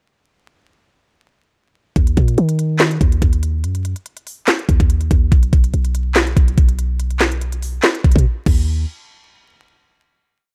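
A bouncy half-time trap beat kicks in at 2.0 seconds, with a knocking kick, a sharp snare layered with handclap, crisp sixteenth-note hi-hats with fast rolls, and crash cymbal, all electronic and up front. Underneath, a deep, boomy 808-style bass with a sine tone and a noise layer holds long, decaying sub-bass notes that follow the kick, with a fast attack and pitch slides. This short, hard-hitting, eerie hip hop piece sits in a dry, close sound with vinyl crackle, and after a brief break at 8.3 seconds it closes on a final hit that rings out to 10.4 seconds.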